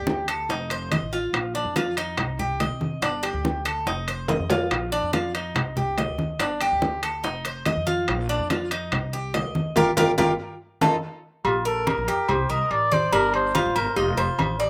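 A dry, outdoor-sounding Cuban son and guajira excerpt in Bb major at 142 BPM, relaxed and warm, where an up-front, metallic picked tres spins arpeggios over woody gut-string upright bass, low-tuned bongos and cowbell, soft-handed congas and ringing timbales with agogo bells, with drum fills and a band accent leading to a veiled, breathy cup-muted trumpet melody entering at 11.5 seconds.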